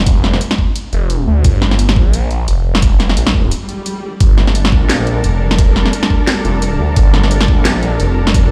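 A thick, swirling saw bass opens this tense, spacious half-time drum and bass excerpt, its detuned unison tone saturated and sent through a phaser so it sits up front from the first moment. Almost at once the electronic drums arrive: a knocking kick that is the loudest part of the mix, with a cracking snare and bright hats riding forward on a swung half-time groove, both kits sounding layered and re-recorded in a small room. At 3.5 seconds the music breaks, and a faint electronic swell fills the gap. From 4.2 seconds a dark, woody string section enters with lush, bowed sustained chords and vibrato, set distant in the mix and pumping under sidechain compression. The harmony rests on a single minor add-nine chord, and the whole piece sounds as if played through a big sound system in a bare stone room, giving it a cavernous, echoing air.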